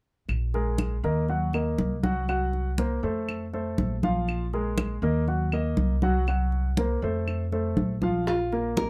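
This Latin Cuban son and guajira excerpt moves at 120 BPM in a straight 4/4, with a sultry, warm mood and a dark production under light reverb. From 0.3 seconds a pizzicato upright bass with gut strings sits up front, woody and thumpy. Close, dry congas with a thick skin and woody, band-limited vintage claves carry the percussion. A natural-sounding grand piano enters just after and plays arpeggios up front through a cycle of Bb7sus4, Ebm, Gbmaj7#11/C and F, which returns to Bb5. At 8.3 seconds a bright, full-bodied nylon-string guitar takes up a brief fingerpicked melody with audible finger squeak, joined by round, low-tuned bongos struck with hard hands and given a compressed, saturated edge.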